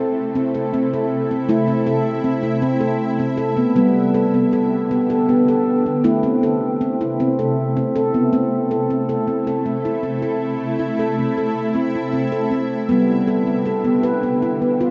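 Drenched in a long plate reverb with a dark, softened top end, this dreamy recording floats in a hypnotic, gentle haze. It is a brief cut from a longer meditative world piece built on tuned percussion, moving at a slow 53 BPM in a lilting 6/8 in A minor. A warm, ringing stainless-steel handpan, played with the fingertips, sits up front with arpeggios. Alongside it, an ethereal, dark synth pad, also up front, holds sustained chords with a slow attack and long release, its detuned unison sine tones, granular texture, chorus and octave-up shimmer giving it a shimmering, ethereal glow. The harmony rocks gently between A minor and G, and a new passage begins at 8.3 s before the piece is cut off at 14.9 s.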